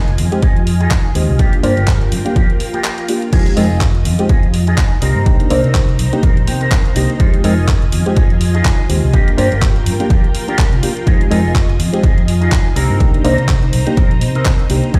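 Groovy and funky, this excerpt of filtered disco house moves at 124 BPM in 4/4 with a 16th-note swing in F dorian, circling through Fm7, Gm7 and Cm7. A punchy analog electronic kick sits up front, joined by a layered house kit of crash cymbal, handclaps and hi-hat that sounds re-recorded in a small room, with sidechain pumping on its hats and cymbals. Underneath, a vintage foam-muted fingered electric bass gives a dark, round, amped low end, while a lush string machine holds slow-attack sawtooth chords with a sub octave, ensemble chorus and a long release. A picked electric guitar through an envelope filter and analog chorus plays a clean riff, and a reedy, worn, slightly out-of-tune electric piano adds phased accompaniment through its built-in speakers, with the bass, strings, guitar and piano all pumping with sidechain compression and passing through a low-pass filter. A brief break arrives at 2.8 seconds, and a clean electric guitar fill stands out at 6.2 seconds, the whole mix sounding dry yet played over a big system in a bare stone room.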